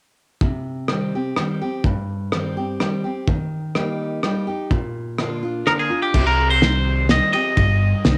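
Honky-tonk and classic country in three-four time, this brooding, heartbroken fragment of a longer piece opens at 0.4 seconds with a full-bodied jumbo steel-string acoustic guitar, its picking marked by finger squeak, over a cloth-damped, thuddy drum kit with a fat snare, tight kick, dark cymbals, a lo-fi, rolled-off top, a muffled, gritty, saturated character and cassette tape coloring. A bright, clean, compressed twangy electric guitar takes the melody at 5.7 seconds, also carrying cassette tape coloring, and a round, dark, amped fingered electric bass joins at 6.1 seconds as the chords return to the minor home chord. The home cassette recording sits in a small room with light reverb.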